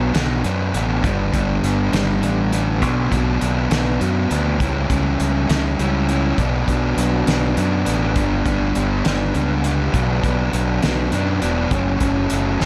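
Set in 6/8 at 67 dotted-quarter beats per minute with a straight feel, this short indie rock piece, cut from a longer track, moves with a cool, restless energy in B minor. A fuzz guitar carries the riff from the first moment, its picked, distorted tone double-tracked, compressed and pushed up front. Beneath it, a growling fingered electric bass, bright and overdriven with a direct, amped edge, holds down the low end from E1 to F#2. A loose acoustic drum kit joins at 0.1 seconds, its punchy kick, fat snare and hi-hat sitting in a pumping studio room. The harmony circles around Bm, passing through G and C#dim before closing on F#m near 11.7 seconds, all wrapped in light reverb.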